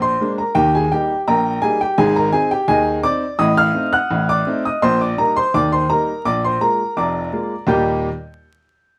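Cheerful and lively, this short cut from a longer ragtime piece features a solo upright piano, woody and boxy with audible action noise, sitting intimate and up front across a range from F1 to G6 at 84 BPM in straight 2/4 time in Eb major, moving through Bb7, Eb, Ab, Adim7, Eb/Bb and back to Bb7 before landing on Eb as a new section begins at 7.7 seconds, all wrapped in light reverb and vinyl crackle.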